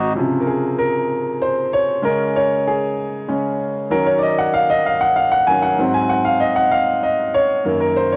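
Captured on a home cassette in a small, wet-sounding booth, this jubilant, uplifting gospel excerpt in 6/8 features a clear, boxy grand piano sitting up front with plate reverb, playing alone from 0.2 to 8.2 seconds through a progression of Dbmaj7, Db5, Ebm7, Ab7 and Gb6.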